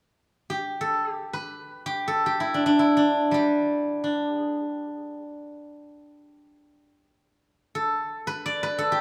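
A solo steel-string zither enters at 0.5 seconds, its silvery tone set up front in a moderate recital-hall reverb. This is Chinese traditional music for solo plucked strings, unfolding in free time in the G gong mode with a serene, pastoral mood. Played with fingerpicks, the acoustic zither sounds mellow yet ringing, moving between G3 and D5. The hall adds a gentle halo around each plucked note, giving the instrument room to breathe. The passage is a brief fragment cut from a longer piece, ending at 9.0 seconds.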